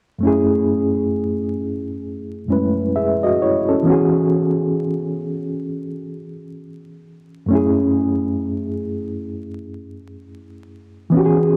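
Hip hop at a slow 66 BPM in 4/4 with a light 16th-note swing, this short passage in F# minor carries a nostalgic, reflective mood. A reed electric piano plays accompaniment alone from 0.2 to 11.6 seconds, ranging from F#2 to E5 and sitting up front in the mix. Its tone is reedy, worn and slightly out of tune, heard through built-in speakers with a fast tremolo and a cassette-tape character. The harmony moves from F#m9 to E69 at 3.9 seconds and back to F#m9 at 7.5 seconds. The whole mix is dreamy and soaked in a lush hall reverb with a 2.5-second decay, with vinyl crackle running underneath.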